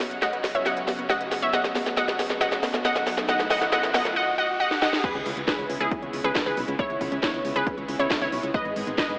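A straight 4/4 pulse drives this soaring, bittersweet uplifting trance excerpt, as an overdriven techno drum kit with a cracking snare, smooth hats and crash fills builds tension under a bright, up-front unison pluck lead with digital delay, a lush supersaw pad and a background pluck arpeggio roughened by vintage 12-bit sampler grit, all three synths pumping with sidechain. A riser and sub drop hover in the background from 2.3 seconds, and at 5.0 seconds the drop lands with an impact, bringing in a dry, punchy analog kick and a round, mellow FM bass. The whole cut sits in a lush hall reverb, filtered through a lo-fi AM radio tone with a faint mains hum.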